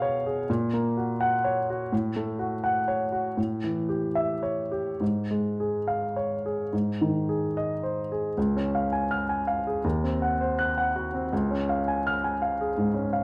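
A clear, polished baby grand piano sits up front alone in this passionate, hopeful romantic character piece, its rubato phrasing ranging from deep bass to bright upper register and drifting through chromatic harmonies before settling home, all framed by a moderate large-studio reverb in this short passage cut from a longer work.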